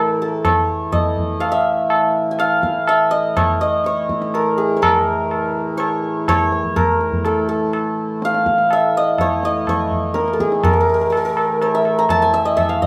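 This is a Hindustani classical recording, cut from a longer piece, with a radiant, devotional mood in a straight three-beat metre. The santur carries the melody from the very start, its hammered strings bright and shimmering as they ring up front through a plate reverb. Beneath it, a hand-pumped harmonium holds a low drone throughout, reedy and nasal with a dark, breathing quality. The tabla enters at 0.4 s, low-tuned with a short ring and a vintage, band-limited character that sits close and present. The music moves into a new section at 4.8 s, and the whole passage rests in a studio room with a lush but brief reverb tail.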